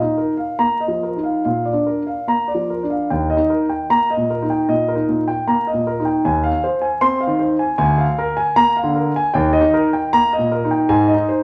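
Dance-like and flowing, this short classical passage cut from a longer piece is a baroque-style suite movement for solo grand piano in Eb major, moving at 70-78 BPM in 4/4 with a rubato feel. The concert grand sits up front, warm with a deep bass, and plays alone across the full 11.4 seconds, ranging from D2 to C6. The harmony opens on a suspended Bb chord that settles onto Bb, then arrives at Eb by 3.1 seconds, passing through Fm7 over an Eb bass and Bb7 over D before returning to Eb and touching Ab at the close. A large studio reverb gives the piano a wet, spacious tail, and a vinyl crackle adds an aged surface to the sound.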